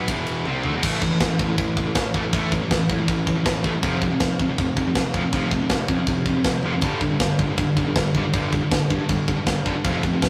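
Driving straight 4/4 at 160 BPM, this relentless, epic heavy metal excerpt from a longer piece pairs two bright, high-gain picked electric guitars riffing through Em, A5, F5 and G5 with a growly, fuzz-drenched picked bass set back in the mix, while an up-front, big-room acoustic kit with a tight kick, medium-tuned snare, toms, crash and ride cymbals enters at 0.1 seconds and drops fills at 0.5 and 6.6 seconds, all captured in a rough rehearsal-room recording with moderate reverb.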